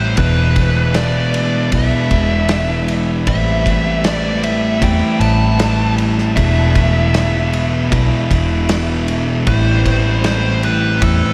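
Shoegaze and dream pop rock at 77 BPM in A minor, this dreamy, melancholic cut drifts through a huge ambient reverb as a nasal, overdriven lead guitar with a parked wah and tape echo carries the melody over a clean, compressed guitar riff with reverse reverb, a thick, up-front fuzz guitar riff with subtle chorus, a round, foam-muted vintage bass, and a loose indie drum kit with a punchy kick and rolled-off top entering at 0.2 seconds, all moving between E7 and Am7.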